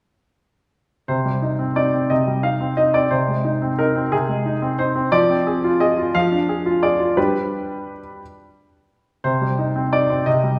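Classical-period piano sonatina in C minor, dramatic and elegant, moving at 59 BPM in a straight 6/8. A solo baby grand with a clear, natural tone and short sustain plays from 1.1 to 10.6 seconds, ranging from C3 to F5 as the harmony passes from Cm through Ab/C, Fm, Ddim/F and G before settling back on Cm. The piano sits up front, while a wet recital-hall reverb with a 1.6-second decay places the listener further back in the room, and the passage is cut from a longer piece.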